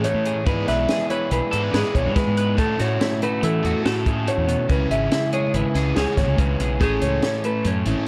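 A dark, warm production with light reverb frames this wistful, intricate math rock and midwest emo fragment in A major, moving at 142 BPM in a straight 5/4 through E7, F#m7/A, C#m7 and Amaj7. An up-front, picked twelve-string electric guitar carries the clean accompaniment while a compressed, fingered electric guitar spins arpeggios above it, and a double-tracked, crunchy overdriven guitar plays a riff bathed in spring reverb. Underneath, a growly, punchy fuzz bass and a compact cocktail drum kit, with its high-tuned snare, tight kick and rolled-off top captured in a small room, play across the full 8 seconds.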